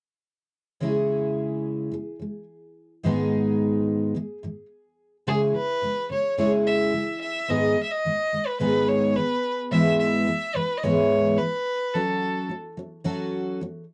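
A picked twelve-string acoustic guitar opens this easy-going, carefree pop excerpt at 0.8 seconds, its bright, shimmering, octave-doubled jumbo tone sitting up front as it picks through C#m and G#m at 108 BPM in a straight 4/4. At 5.3 seconds a single bowed violin enters with the melody, its clear, focused voice carrying vibrato. The violin stays within a modest upper range and drops out at 12.5 seconds, while the full-bodied guitar carries on to 13.8 seconds. Beneath the tune the harmony moves through C#m, G#m, E/G# and F#m. The sound is dry and close, a 1970s-style studio recording touched with light reverb and tuned to A4 = 441 Hz.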